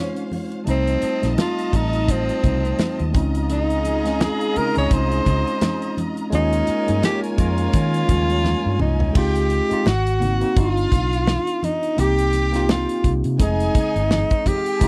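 Bittersweet and smooth, this lush 1970s-style soul excerpt moves at 85 BPM in F minor with a swung 16th feel, led up front by a breathy tenor saxophone with soft attacks, scooped notes and jazz-style vibrato, over a worn, slightly out-of-tune tine electric piano and a distant string section whose bowed lines carry vibrato and portamento. A polished, airy drum kit with a tight kick and a dark, round, punchy, foam-muted fingered bass both sit up front, while very quiet low-tuned congas played with soft hands add texture, and a background horn section with a smooth top slips in stabs from 3.5 to 8.8 seconds. A drum fill at 8.4 seconds leads into a second section over chords such as Dbmaj7, G7b13 and Fm9, all in a dry, close studio sound.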